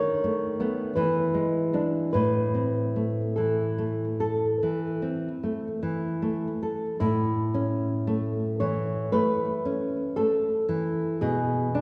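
A slow, rubato 4/4 pulse carries this elegiac, solemn romantic guitar duo, in which a dark, thumb-plucked flamenco guitar takes the melody over a woody, up-front nylon-string guitar accompaniment with the warm sound of old strings, the whole set in a wet concert-hall reverb and turning from A minor to A major for a new section at 7.0 seconds.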